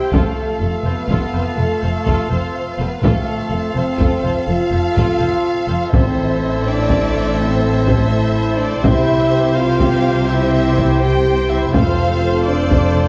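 A vintage-sounding taiko ensemble struck with hard sticks drives this heroic, epic orchestral film-score excerpt in a rolling 12/8, while a mellow, distant French horn section and a clear woodwind section hold sustained chords moving from F through A minor and C. Lush, vibrato-rich violin sections carry the expressive melody and a second line above a rich viola accompaniment and warm cello and woody double bass sections on the bass. A brief, very quiet timpani part played with hard mallets arrives at 5.9 seconds, and a moderate scoring-stage reverb lends the ensemble its spacious air.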